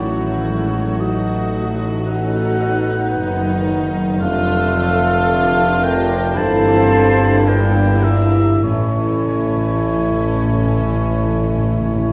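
A solemn, yearning slow romantic movement for symphony orchestra at 48-57 BPM, played with rubato, opens with a soft-attack sul tasto violin section singing the melody over a shadowed second violin line, an airy, hollow flute, a smooth clarinet and a close-miked oboe, while woody violas, a distant bassoon, a tight French horn section, ringing harp arpeggios, a clear vintage tuba and rich, floating cellos and double basses fill the accompaniment and bass, the harmony settles into D minor at 4.2 s, hard-mallet timpani add an articulate fill from 8.6 s, and a wet scoring-stage reverb places the whole ensemble further back in the room.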